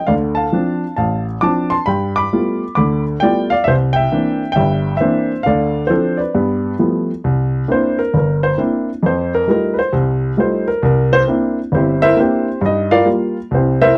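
Swung eighth notes in 4/4 give this relaxed solo jazz performance its easy lilt, carried by a worn, intimate baby grand piano that sits up front with short sustain and audible action noise, ranging from G1 to D6 over changes built on Dm7, G9, C9 and F9, all heard in a dry, close 1970s-style studio sound across 14 seconds taken from a longer piece.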